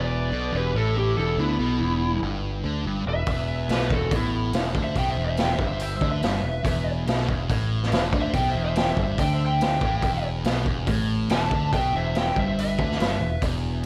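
A sludgy, double-tracked guitar riff and a growly fingered bass open this gritty, smoky blues rock and southern rock fragment alongside an overdriven lead guitar through a small cranked amp carrying the melody and a darker, smoother lead tucked in the background on a second line, before a raw, saturated garage drum kit with a punchy kick and medium-tuned snare kicks in up front at 3.3 seconds, all held on a single minor chord in a lightly reverberant room.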